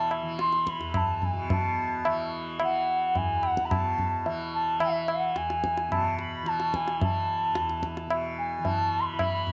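In a straight 5/4 at 109 BPM, this devotional, radiant Hindustani classical passage in E major puts a pure, reedy bansuri melody with vibrato and a crisp attack up front, over a softly plucked, buzzing, shimmering tanpura drone and high-tuned, close and dry tabla that enters at 0.1 seconds, with the recording set in a moderate plate reverb.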